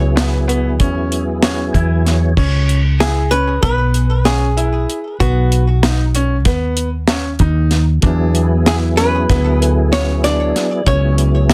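Driving and brooding, this short cut from a longer progressive instrumental moves in an uneven 9/8 with a straight feel. A dark, clean archtop guitar carries the melody throughout, its picked, compressed tone trailed by digital delay. Underneath, a woody fretless bass sits up front with a growly, round voice. A dry drum kit with a medium-tuned snare, tight kick, hi-hat and crash supplies a deep, rolled-off pulse. A clear grand piano adds boxy, short-sustain arpeggios, while a lightly overdriven tonewheel organ with key click, chorus vibrato and slow rotary speaker plays a fill at 1.4 seconds, drops out, then returns at 8.0 seconds. The harmony travels from C#m7 through B and E7 back to C#m7, all inside a dense, heavily limited master with light reverb.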